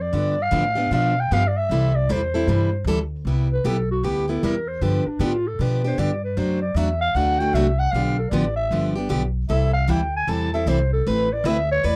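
Charming and playful, this excerpt of acoustic string swing in the jazz manouche style moves at 154 BPM in C major with a lilting swung feel, and it is captured in a dry, close 1970s-style studio sound. A growling clarinet carries the melody with a raspy subtone, scooped notes, light vibrato and a slapback echo, stepping into a solo from 3.3 seconds over changes such as G7, Cmaj7 and D7. Underneath, a woody, thumpy pizzicato upright bass on gut strings and a bright, boxy picked plugged-in steel-string acoustic guitar with audible finger squeak sit up front.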